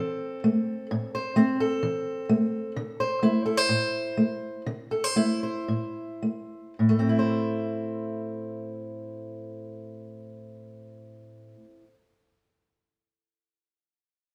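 Yearning and stirring, this short folk passage in A minor is cut from a longer piece and moves in a straight 4/4 at a tempo ranging from 104 to 130 BPM. A fingerpicked steel-string acoustic guitar carries the accompaniment for the full 11.9 seconds, spanning A2 to C5 with a concert-style tone that sits up front. The harmony rests on Am, shifts to Dsus2 at 2.8 seconds, and returns to Am at 6.8 seconds, where a second section begins. The pace slows between 2.8 and 6.8 seconds, adding to the aching pull of the phrase. Audible finger squeak and a warm tone give the playing an intimate, human texture. A wet stone room reverb with a 1.3-second decay surrounds it, lending the sound of a band playing live in one space, tuned slightly bright to A4 = 443 Hz.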